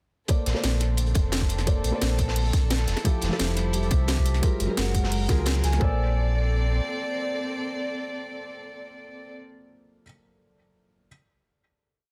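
Liquid drum and bass at 174 BPM in Bb lydian, dreamy and lush, opening on a drop where an overdriven, up-front electronic kick, a rolling two-step kit with cracking snare and bright hats, a gritty looped breakbeat, dry high-tuned bongos joining at 1.2 seconds and a deep sine sub bass drive under a felt-muted upright piano with audible action noise and dub echo, sul tasto chamber strings pumping with the sidechain, and a bright fingerpicked Celtic harp arpeggio through digital delay from 3.1 seconds, before the drums stop at 5.8 seconds and the piano and strings hold a final Bbmaj9 chord, the piano ringing on alone until 11.1 seconds.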